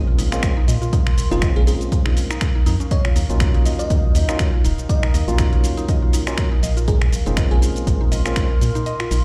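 From the opening instant of this late-night, smooth deep house excerpt, a hollow, organ-like FM bass sounds out dark and percussive underneath barky, overdriven tine electric piano stabs played through a combo amp, while a bell-like FM electric piano carries a sparkling, mellow melody in the background with chorus, phaser and digital delay. Beside it, a woody, round synth pluck spins arpeggios with a cassette-tape tint, and a warbling, nostalgic, lo-fi pad holds a detuned, sustained texture bathed in its own reverb and phaser. A dusty, gritty sampler-style kit of finger snaps, hi-hat and shaker arrives almost at once, and a punchy electronic kick joins up front at 0.4 seconds, setting the bass, stabs, pluck and pad pumping against it. The groove moves at 121 BPM in 4/4 with a light swing on the sixteenths, in Eb minor, as the harmony shifts from Bbm9 to Ebm9 and back to Bbm9. The kick stops at 8.5 seconds, leaving the bass, pluck, pad and sampler kit to ring through a large studio reverb that gives the whole a big-room sound.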